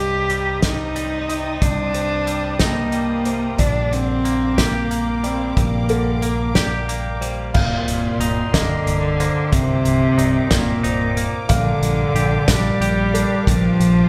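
Post-rock in C minor at a slow 61 BPM in 6/8, cinematic and cathartic, where a rich, bowed solo cello with light vibrato carries the melody up front over lush symphonic strings holding sustained chords in the background, twangy, bright electric guitar arpeggios, soft felt-muted upright piano arpeggios with audible action noise, a round fingered electric bass, and a loose indie drum kit with a fat snare and tight kick entering at 0.3 seconds, all set in a wet concert-hall reverb as an excerpt cut from a longer piece.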